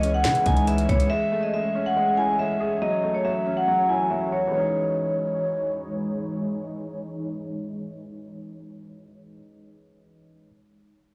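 The recording sounds blown-out and overdriven, with a moderate plate reverb and a small room ambience, and a filter sweep colors the opening of this melancholic, dark trap excerpt. It moves at 140 BPM in 4/4 with a half-time feel in C# minor, cycling through C#madd9, Amaj7 and F#m7 before returning to C#madd9. A trap drum kit with a knocking kick, sharp snare and metallic hats sits up front alongside a growling, buzzy 808-style bass with transformer saturation, and both drop out at 1.1 seconds. Up front, a vibraphone played with medium hard mallets carries the ringing melody through tape echo and a low-pass filter until 5.8 seconds. Beneath it, a dark concert grand piano with deep bass plays the accompaniment until 10.5 seconds, while an ethereal, airy pad holds slow-attack chords with chorus, tremolo and its own built-in reverb.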